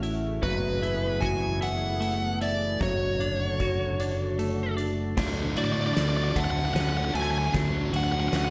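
A large studio reverb with a touch of small-room ambience surrounds this euphoric, cinematic post-rock excerpt, moving slowly at 51 BPM in 6/8 through F#m11, Dmaj7/F# and Dmaj7. A soft, detuned sawtooth pad with chorus and tremolo holds chords in the background, while a twangy, compressed twelve-string electric guitar picks clean arpeggios through spring reverb and slapback echo. A growly fingered bass and a huge arena kit with a fat snare, punchy kick and bright cymbals play underneath, and a dark, overdriven lead guitar carries the melody up front from 0.4 s; at 5.2 s the music builds with a drum fill as a sludgy distorted guitar riff joins further back.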